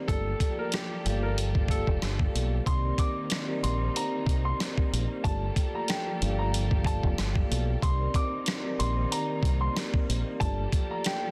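Boom-bap hip-hop in C dorian, this tough, dark excerpt moves at 93 BPM in 4/4 with a light swing on the 16ths. A gritty, compressed sampler-style drum kit sits up front with a thumpy kick, fat snare, hi-hat and rim click, its sound re-recorded in a large room. Alongside it, a round, deep dub fingered electric bass anchors the low end and drops out at 10.7 seconds. Over this, a woody upright piano carries the melody with audible action noise and a tape echo. A mellow vibraphone struck with soft mallets rings with a slow motor vibrato, while a lush, bowed string section holds smooth sustained chords; both sit filtered and subdued beneath the drums. The harmony alternates between Gm9 and Cm9, and the excerpt carries a dense, heavily limited master.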